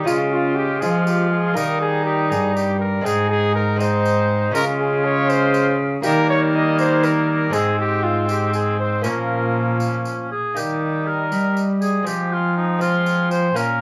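This is a classical, renaissance-style consort dance in 6/8, courtly and solemn in mood, cut from a longer piece. A cornet with light vibrato carries the melody over a warm, distant cor anglais on the second line. A mellow, vintage-toned bassoon and a delicate, fingerpicked lute with doubled gut strings fill in the accompaniment, the lute sitting in the background. Up front, a single bowed cello lays down the bass with a rich, nasal, reedy gut-string tone, while a jingly, bright tambourine enters at 0.1 s with a compressed, saturated sound. The harmony moves through Db, Eb and Ab before reaching Bbm, and a brief new section begins at 10.6 s, passing through Eb to Fm, with the ensemble set in light reverb.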